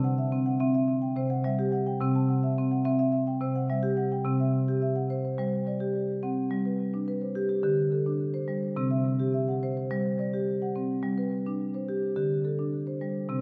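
Bathed in dark scoring-stage reverb, this short cut from a longer piece of gentle, dreamy world meditative music features a solo marimba with medium hard mallets, smooth and up front under a diffuse ambient delay, moving between C and G chords in C lydian at 106 BPM in a straight 4/4 across 13.4 seconds.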